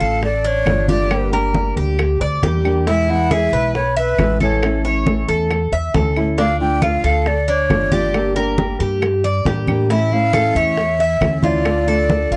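A straight 4/4 Cuban son groove in the guajira style moves at 136 BPM, its congas bright and thin-skinned under soft hands, with tight, high-tuned bongos entering at 0.2 seconds and woody claves at 0.7 seconds, both sitting in the background. Up front, a thumpy, gut-strung upright bass gives a dark pizzicato foundation, roughened by transformer saturation. A picked tres with metallic double strings spins bright arpeggios, while a boxy nylon-string guitar adds fingerpicked accompaniment, finger squeak and all. Above them a breathy, mellow silver concert flute carries the tongued melody in a straight, slightly unsteady tone, close-miked and forward. The harmony cycles through D minor, G minor, E and A in D harmonic minor, giving this danceable, warm cut from a longer piece a dry, gritty cassette-tape character with little reverb.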